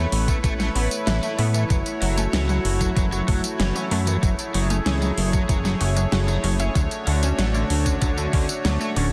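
Synthwave at 95 BPM in F# minor, cinematic and nostalgic, this short cut from a longer piece sets a fat, detuned sawtooth bass up front beside a thumpy overdriven electronic kick, with a shimmering pulse-width pad pumping on sustained chords, a bright, wave-folded unison pluck tracing delayed arpeggios, a crunchy overdriven guitar riff with chorus and delay in the background, and a layered pop kit of fat snare, metallic hats and tambourine, all moving through Aadd9, F#m7 and Dmaj7 in a dense, heavily limited master with light reverb.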